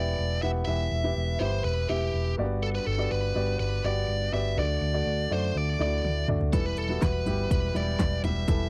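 A biting, overdriven lead guitar with slapback echo carries the melody up front in this dramatic, earnest piano-driven pop excerpt, set over a clear, woody upright piano and a dark, round picked electric bass. At 6.0 s a punchy deep house drum kit with a fat snare, smooth hats, handclaps and toms arrives with a fill. The excerpt has a dry, close 1970s-style studio sound.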